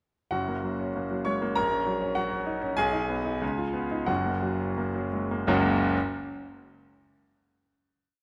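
A bright grand piano opens the piece at 0.3 s, playing alone in F# major with a tune in octaves over rippling figuration. This is a short, brilliant and sparkling classical virtuoso study in 2/4, moving with rubato at 84-100 BPM and tuned to A4 = 443 Hz. The harmony moves from F# through F#/A#, G#m/B and C#9 before settling back on F#, and the pace slows from 2.2 s to 5.5 s. A final chord arrives at 5.5 s, and the piano stops at 6.0 s. The instrument sounds polished and up front, with an intimate presence, long sustain and audible action noise, set in a moderate scoring stage reverb.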